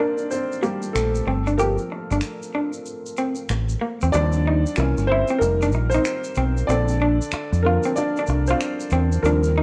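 The recording sits in a small room with light reverb and a soft, rolled-off top end, and this short piece is cut from a longer track. It is smooth, sensual neo-soul R&B in 4/4 with a swung sixteenth-note feel, and a dark upright piano carries the lead as a solo from the opening through to the end. The piano is mellow, woody and slightly detuned, with audible action noise that makes it feel intimate and close. Beside it, an electric guitar through a small old amp plays a second line with a compressed, slightly broken-up, lo-fi tone, while a quiet egg shaker and finger snaps add acoustic texture from 0.2 seconds. A deep, round, punchy fingered dub bass enters up front at 1.0 seconds, and the harmony moves from Cm9 and Gm11 through Eb6, C7b9 and F9sus4 before settling on Bbmaj9.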